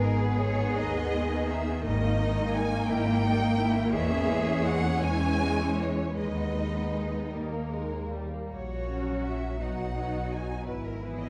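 A string orchestra begins together in a slow, yearning and solemn romantic movement in G# minor, flowing in a rubato 6/8 at about 49-59 BPM in dotted quarters. The first violins carry the melody with a focused, lush tone and a smooth top, while the second violins shape a soft-attacked, expressive line beneath them. Violas supply the accompaniment with vibrato and expressive portamento, the cellos add a focused bass line, and the double basses anchor the lowest register with an even, up-front sound. The harmony moves from G#m through D#/G# and C#m/E, then past D#, F#/A# and B toward E/G# at 10.7 s. A moderate scoring-stage reverb and a dark production give depth to this 11.3-second fragment cut from a longer piece.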